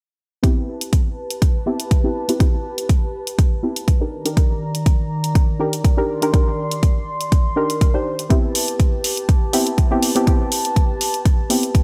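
At 0.4 s a deep kick, dark hi-hats, a mellow chord stab and an analog pad enter together, opening this moody deep house excerpt cut from a longer piece. The electronic kick sits up front, layered and produced with a touch of studio reverb, while the hats sit lower in the mix, and the groove swings gently on the sixteenths. The soft, up-front stab blends triangle, sawtooth and sine tones into a fast-attack filter pluck that decays. It is coloured by chorus, cassette tape and delay, with a filter sweep running across it. Behind it the vintage pad holds sustained chords with a smooth, warbling, detuned and wave-folded character, plus chorus, sidechain pumping and its own filter sweep. The harmony moves from Am9 to Cm9 at 4.1 s and back to Am9 at 8.3 s, all set in light reverb with a bright 1980s-style digital sheen.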